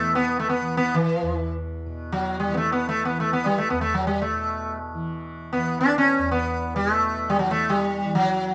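A round, buzzing sitar sits up front, plucking a meditative, solemn Hindustani classical melody with the glow of its sympathetic strings. Beneath it, a softly plucked tanpura sustains a shimmering low drone throughout this brief fragment of a longer piece. Light reverb gives the acoustic pair a gentle sense of space.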